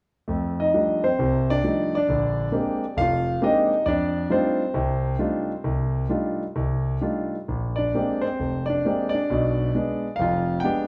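Sophisticated and warm, this short solo jazz passage is cut from a longer piece and unfolds with a swung, rubato feel in 4/4. A concert grand piano carries everything alone from 0.3 to 10.9 seconds, ranging from deep bass notes at F1 up to G5. Its tone is natural and up front, with a rich low end that gives the chords real weight. The harmony moves between lush F13 and Bb13 voicings before turning toward a Bdim7 at 9.3 seconds, adding a touch of tension near the close. A generous large-studio reverb surrounds the instrument, lending the performance a spacious, polished glow.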